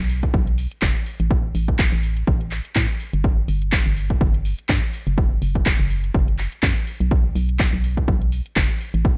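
A swung 4/4 house groove drives this short, feel-good slice of piano house, its sixteenths pushed just enough to give the beat a loose, euphoric bounce. An up-front electronic kick sits at the heart of it, punchy and analog with a tape-warm body and the air of a large room around it. Layered house drums add handclaps and metallic hi-hats, set close and carrying a touch of small-room ambience. Underneath, an organ-like FM bass plays hollow, percussive notes with a fast attack and dark decay, pumping through sidechain compression. The whole excerpt holds a single section for about 9.2 seconds, wrapped in digital ambience and a dry, gritty hardware sound.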